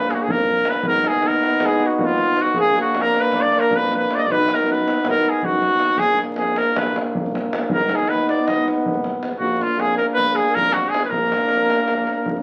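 Fiery and restless, this excerpt of Balkan brass-band folk drives along at 316 BPM, counted in eighths, in 9/8 and Bb phrygian dominant. A clear, lightly vibratoed trumpet carries the melody up front, though distant and roomy, while a mellow alto saxophone with vibrato traces a second line in the background. A trombone and a warm, roomy euphonium supply accompaniment, a punchy tuba anchors the bass from behind, and a deep, acoustic davul joins at 0.1 seconds from far off in a large room, all set in moderate large-studio reverb with the crackle of a very old 78 rpm record.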